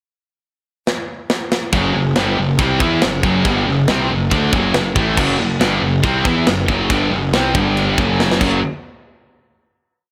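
A tight metal drum kit opens this dark, aggressive heavy metal piece with a fill at 0.9 seconds, and at 1.7 seconds a bright, compressed distorted electric guitar and a scooped high-gain guitar enter with a power-chord riff on F#m, doubled by a growly, punchy fuzz picked electric bass driving eighth notes beneath an up-front drive groove of kick, medium-tuned snare, china and crash cymbals, the riff turning through G5 and F#5 in small room ambience before a final hit at 8.6 seconds.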